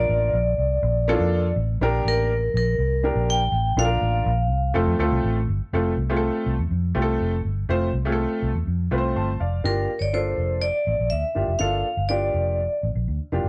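Lightly reverberant and up front, this passionate, driving cut of uptempo 1960s-style soul at 122 BPM in G dorian sets a metallic, ringing vibraphone melody, played with hard mallets and fast motor vibrato, from 0.0 to 4.7 seconds and again from 9.7 seconds, over a woody, slightly detuned upright piano with long sustain and a dark, foam-muted, punchy fingered electric bass, moving through Bb, Gm and F before settling on Gm7.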